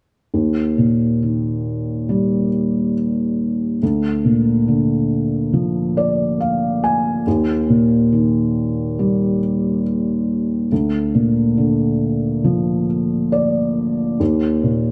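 A felt-muted upright piano, mellow and intimate with thick felt and placed up front, carries this tender, hopeful pop excerpt at 69 BPM in Eb major, alternating Eb and Bb/D chords under a moderate plate reverb and adding short fills at 5.5 and 12.9 seconds before settling on Eb at 14.2 seconds.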